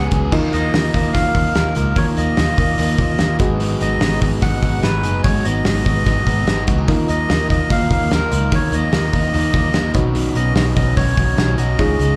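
Jangly indie pop with a bittersweet, wistful mood, caught as a short cut from a longer piece played live through a club PA with a touch of club reverb. A reedy, breathy melodica with a nasal, plastic-cased tone carries the melody, its notes given a slapback echo. Behind it sit a bright, overdriven picked electric guitar, a clean, direct-recorded guitar picking arpeggios with subtle chorus, and soft, round electric-piano-like synth keys with a mellow, decaying tone, chorus and a filter sweep; all three sit in the background with slapback echo. Up front, a loose acoustic drum kit with a punchy kick, medium-tuned snare, dark cymbals and a pumping room sound plays from 0.1 seconds, alongside a dark, foam-muted vintage fingered bass with a round, amped tone. The harmony moves through Ebsus2, Abm7 and Badd9, giving the straight 4/4 groove its yearning colour.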